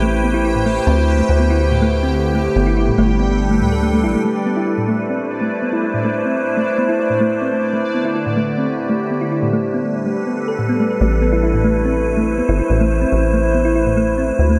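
A dark, wet echo-chamber haze frames this glitchy, intricate IDM excerpt in A minor at 142 BPM, where a crystalline, detuned glass pad holds sustained chords up front over tine-like, round synth-pluck arpeggios with tape echo, a bubbling, randomly stepped sawtooth texture until 11.0 s, and a rubbery, resonant acid bass that drops out at 4.2 s and returns at 11.0 s as the chords move through Am7, D7sus4 and G.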